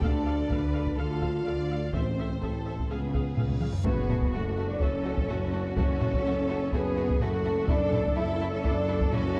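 This cinematic, epic orchestral film score cut moves at 125 BPM in 4/4 with a dramatic mood, opening over Dm and Am chords before settling into F# minor at 3.9 s, where a drum fill, a huge, bright reverse cymbal and an impact mark the shift. A taiko ensemble struck with heavy sticks drives the music forward alongside a tight French horn section holding sustained chords, while a clear, distant violin section carries the melody over a lush second violin line and a rich, smooth viola accompaniment. A dark, woody cello section, a mellow tuba and a double bass section with soft attack and portamento anchor the low end, soft-mallet timpani sound briefly at 1.9 s, and moderate scoring stage reverb gives the production a dark, warm sheen.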